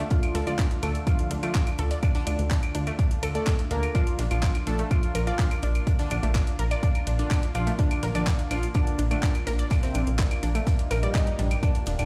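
A dramatic, cinematic slice of melodic techno at 125 BPM in straight 4/4 opens with a thick, detuned unison lead carrying the melody, a glassy wavetable pluck tracing a crystalline second line beneath it, a smooth analog pad holding sustained chords in the background, and a lush, warbling unison pluck spinning arpeggios. Underneath, a plucky analog bass sits up front with a punchy, funky, wave-folded tone, while the lead, plucks, pad and bass all breathe with sidechain pumping and the lead and both plucks trail delay. From 0.1 s the drums arrive: an overdriven electronic kick sits up front in the mix, a tape-warm deep house kit adds claves, handclaps and hi-hat, and a very quiet, airy fusion kit contributes a high-tuned snare and hi-hat. The harmony moves from Dm to Bb at 3.9 s, and an electronic swell appears in the background at 10.8 s. The whole cut, taken from a longer piece, rings out through a big sound system in a bare stone room, giving it a digital ambience.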